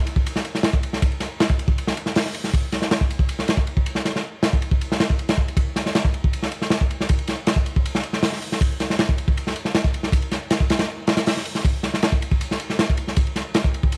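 Raw and dark, this drum and bass excerpt rides a straight 4/4 groove carried entirely by a crunchy breakbeat drum kit that plays from 0.1 to 14.0 seconds. The kit sits up front with a tight kick, medium-tuned snare, hi-hat and ride cymbal, its saturated, gritty tone and dusky cymbals softened by a rolled-off top. The sound is dry and close, with a layer of vinyl crackle beneath.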